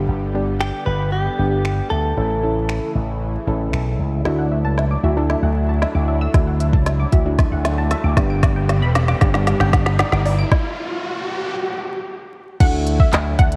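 Dance-pop at 115 BPM in D major, carefree and summery, built on a bright, punchy slap bass with an envelope filter, a soft, round pluck with chorus and a smooth supersaw pad, all pumping with sidechain, while an organic electronic kit of soft kick, woody snare, crisp hats, snaps, claps and crash sits up front from 0.6 seconds. A clean, direct-recorded electric guitar with tape echo plays a brief melody, then a tight, driving sequenced synth with phaser and ring modulation arpeggios high over a build-up with a drum fill and an electronic riser, before the music stops and a lush, detuned unison pluck plays a short melody at 12.6 seconds. The whole excerpt carries light digital ambience and a worn cassette character with vinyl crackle and warbly pitch drift.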